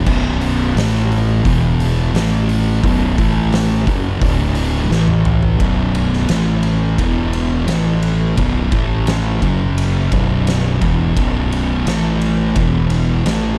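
A growly, overdriven fingered fuzz bass sits up front beside an oversized low-tuned drum kit with a punchy kick, fat snare and dark cymbals in a bright, pumping stone room in this heavy, brooding stoner and doom metal excerpt at 86 BPM, where one thick fuzz guitar riffs up front and a darker twin riffs in the background over power chords of B5, A5, E5, F#5 and D5, with a drum fill at 4.9 seconds leading into the second section of a dry, dark production.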